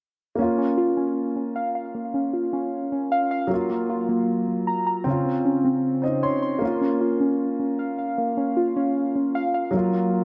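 Brooding and eerie, this half-time hip hop fragment opens with muted, felt-like synth keys spinning soft arpeggios through chorus and delay beside a dark, mellow baby grand piano whose audible action noise and long sustain carry the accompaniment, with a brief piano fill at 5.8 seconds, all bathed in a lush hall reverb over a Bbm, Gbmaj7 and Dbmaj7 progression.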